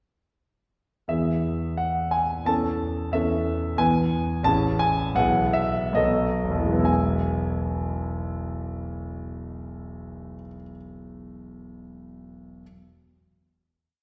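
A warm, vintage-toned concert grand piano carries this short, passionate romantic character piece alone in a flexible rubato, setting a smooth single-line melody over hymn-like chords and a deep bass, then slowing from 3.1 seconds until a final chord arrives at 6.9 seconds and lingers in the lush reverb of a recital hall.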